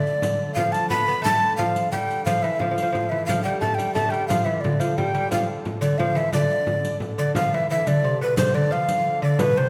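Set in a wet scoring-stage reverb, this excerpt of a driving, ancient-sounding medieval dance in D dorian moves at 177 BPM in 3/4, with a breathy, chiffy wooden tenor recorder carrying the melody up front with vibrato, a bright, fingerpicked gut-string lute playing a delicate second line, a reedy, nasal hurdy-gurdy holding a drone on D3 in the background, and a small frame drum and soft-handed riq with dark jingles adding close, dry percussion before the music moves into a new section at 7.4 seconds.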